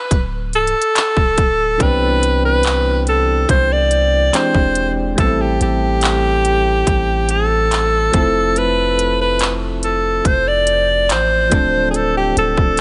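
Longing and late-night in mood, this contemporary R&B piece in A minor moves at 71 BPM. A clear, up-front alto saxophone sings a jazz-style solo with light vibrato and scooped notes over a deep, sine-toned 808-style bass and a trap drum kit of hard-clipped kick, crisp hi-hat and handclaps. Soft, round electric-piano-like synth keys with chorus and tremolo enter at 1.8 seconds on Cmaj9 and drift through Am7 and Fmaj7 to Dm7, all set in a light digital ambience.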